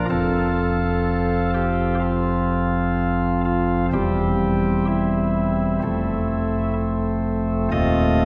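A chamber organ sounds from the very start, its cornet stop speaking with a nasal edge and a chiff as each note begins. This is a reverent, majestic chorale-style classical piece in 4/4 at about 63 BPM, played with a rubato feel that lets the phrases breathe. The organ plays solo throughout the 8.2-second fragment, cut from a longer piece, and ranges from Eb1 in its lowest depths up to Eb5. The harmony rests on F, moves through C/E, returns to F and closes on F7/Eb, leaving the passage open as the clip ends. The instrument sits up front in the mix, with its intimate chamber voicing set against a wet church reverb whose 2.8-second tail fills the hall around each chord.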